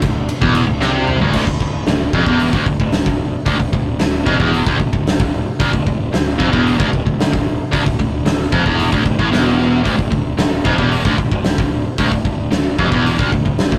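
A dark, epic heavy metal passage in D minor at 113 BPM opens with a bright, double-tracked overdriven guitar riff low in its register, a fuzzy, growling fingered bass sitting in the background, and an up-front big rock drum kit with a fat snare, punchy kick and rolled-off top. A drum fill from 0.8 to 1.3 seconds leads into a D minor section where the full band drives on in straight 4/4 time. The rough rehearsal-room sound carries tube saturation and a moderate booth ambience, and the clip is cut from a longer piece.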